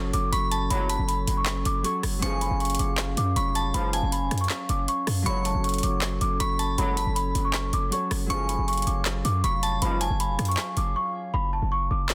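A punchy, heavy 808-style bass sits up front in this menacing, eerie trap cut from a longer piece, moving at 158 BPM in a half-time feel in F# harmonic minor over F#m and C# chords, while a worn, slightly out-of-tune celesta carries a delicate, sweet melody through tape echo. A bright, ringing thumb-plucked Celtic harp accompanies and an ethereal glass harmonica holds sustained chords, with a crystalline FM synth bell line treated with chorus and mellow, distant brass stabs tucked in the background. The electronic kit brings a woody snare, metallic hats, claps and rim clicks to a dense, heavily limited master, and after a brief break at 11.0 seconds the hi-hats drop out from 11.3 seconds as the harmony settles on F#5.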